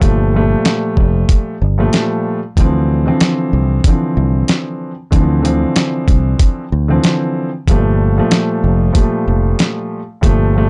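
A dark, mellow grand piano with audible action noise and a cassette-tape, filtered tone opens together with a round, punchy fingered electric bass and a gritty, compressed soul-sampler drum kit of thumpy kick, medium-tuned snare and hi-hat, setting a tough boom-bap hip-hop groove at 94 BPM with swung 16ths in G dorian over Gm9 and Dm9 chords, all in a dusky, lightly reverberant mix cut from a longer piece.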